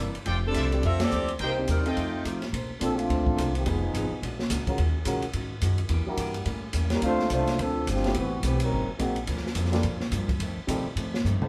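A wet studio reverb wraps this energetic, joyful big band swing excerpt in Bb major at 213 BPM, recorded with the band playing live in one room, as an up-front saxophone section with vibrato carries the melody for the opening seconds while a bright trumpet section punches out stabs and the whole band hits an accent at 1.0 seconds. A woody pizzicato upright bass, a dark, clean hollow-body archtop guitar sitting in the background, an intimate baby grand piano with audible action noise, and an open drum kit with dark cymbals and a punchy kick drive the swing underneath. From 2.5 seconds a tight, softly attacked trombone section takes a solo over rich chords such as Bbmaj9, Ebm11 and A7b9, before a drum fill at 11.2 seconds.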